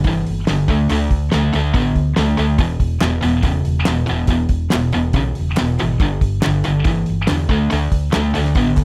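A bright, up-front distorted guitar drives this sunny, confident classic rock excerpt at 141 BPM in a straight 4/4, riffing over G5, D5 and E5 power chords alongside a second, overdriven stack guitar set further back in the mix. A cloth-damped, thuddy acoustic kit with a fat snare, a tight kick and a dark, rolled-off top holds the groove, while a round, punchy hollow-body electric bass enters at 0.1 seconds. From 3.0 seconds, a hollow group handclap from a small room joins in the background, all under light reverb.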